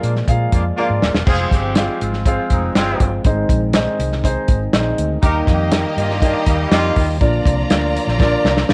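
A full-band accent opens this danceable, uptempo 1960s-style soul excerpt, built on a dry, up-front drum kit with a tight kick and fills at 0.8 and 8.2 seconds, a round, foam-muted electric bass, a dark, woody upright piano with audible action noise, a clean tonewheel organ holding chords in the background through a stopped rotary speaker, and a smooth, tight jazz-style horn section, joined at 5.2 seconds by a lush, distant bowed violin section, the whole set in moderate spring reverb.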